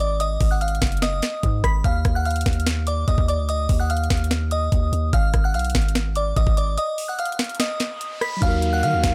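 A half-time trap groove drives this dark, menacing hip hop excerpt, with a knocking kick, sharp snare, rim clicks and bright hi-hats from an electronic kit that sits up front with a tape-tinged edge. Beneath it a deep, sine-like 808-style bass holds long notes with a fast attack and decaying tail, while a glassy FM synth bell carries the melody in a crystalline high register, its sound thickened by chorus. The harmony moves between Ab5 and Ebsus2, and a break opens at 6.8 seconds, with an electronic riser and downlifter joining low in the mix from 7.2 seconds. At 8.4 seconds the music settles on Ebmadd9 as a mellow, clean tine electric piano adds accompaniment and a soft, breathy flute-like synth lead sounds a single held note in the background, with vibrato, chorus and delay. Moments later an ethereal, airy pad with slow attack, tremolo and its own reverb drifts in very quietly, against an otherwise dry, close sound.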